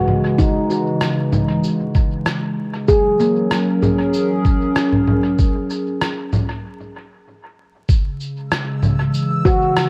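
Crackly, lo-fi cassette sound with vinyl crackle and a light room reverb frames this deep, meditative slice of ambient dub at 96 BPM in C# dorian, cut from a longer piece. A dark, detuned, warbling pad holds sustained chords moving from C#m to F#7 at 2.9 seconds, while a mellow, ringing handpan plays arpeggios through analog delay. Muffled, pitched-down sampler drums sit up front, a thumpy kick alongside congas, cabasa and rim click sent through dub echo, with a break at 6.6 seconds before a faint, bright, reversed granular texture drifts in at 8.7 seconds.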